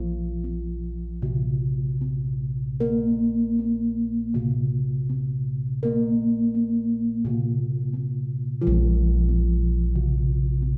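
The recording sits in a reverberant recital hall, which gives this short extract, cut from a longer piece, a resonant, church-like glow. It is Javanese gamelan music in a stately, shimmering mood, moving in a steady four with a straight feel. Bossed gongs carry the bass from beginning to end, their round, full bronze tones miked close, dry and up front, with a beating quality in the sound. Alongside them a bronze metallophone plays the accompaniment throughout, struck with padded disc mallets for a mellow, soft ringing, and its paired tuning produces shimmering beats. The music shifts into a new passage at 8.6 seconds and continues there until the extract ends at 10.8 seconds.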